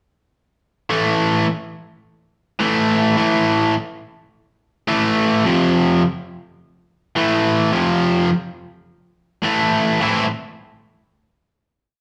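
A bright, overdriven electric guitar, double-tracked and up front, drives a gritty power-chord rock riff in A minor at 105 BPM from 0.9 seconds, moving between A5 and F5 before landing on a final A minor chord at 10.0 seconds, all set in a moderate large-studio reverb with the feel of a band playing live in one room.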